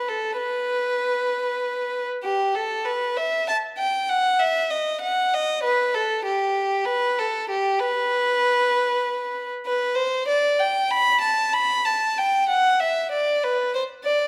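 In a rubato 12/8 at 64 dotted-quarter beats per minute, this introspective, grave baroque-style suite movement, cut from a longer piece, features a single bowed violin playing alone from 0.0 to 14.3 seconds between G4 and B5, its rich tone, vibrato and smooth, even line heard close and up front within a moderate scoring-stage reverb of 1.6 seconds.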